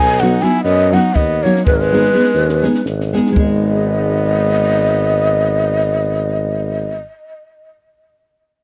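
Bittersweet and virtuosic, this short cut from a Balkan wedding-band folk piece moves in a straight 7/8, led by a breathy, mellow end-blown ney with expressive vibrato and tape echo, miked up front. A smooth-topped trumpet plays a quieter second line in classical style, a warm tuba carries a roomy bass, and a full-bodied fingerpicked nylon-string guitar accompanies from 0.2 s. A compact cocktail kit with punchy kick and high-tuned snare, dark and rolled-off, plays from 0.2 s until it drops out at 3.6 s, all within a dry, close 1970s-style studio sound.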